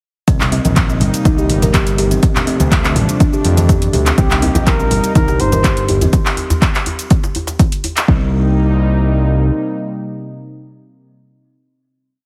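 Afro house with an earthy, warm mood, built on a punchy four-on-the-floor electronic kick sitting up front, programmed metallic hats, claps and shaker, quiet interlocking congas, and a smooth, sidechain-pumped synth bass playing a dub-style line under a detuned analog pad's sustained Cm7 and Dm7 chords. A woody, buzzing kalimba repeats a 16-step arpeggio sequence through dub echo, while from 4.2 seconds a veiled bucket-muted trumpet with light vibrato states short hook phrases and a dry djembe adds a cross rhythm in the background. The drop gives way at 8.1 seconds to a final Cm7 chord carried by the pad and the bass, all under light studio reverb and a heavily compressed, radio-style finish.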